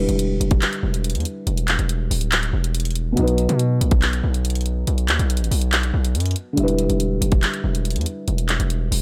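Trap hip hop in E minor at 141 BPM with a half-time feel, this hard-hitting, eerie excerpt sets a dark, boxy, felt-muted upright piano, low-pass filtered and mellow behind the rest, over a saturated, heavy distorted 808-style bass and an up-front electronic trap kit of hard-clipped kick, bright hi-hats and handclaps entering at 0.1 seconds, all moving through Em7, B and back to Em7 in light reverb.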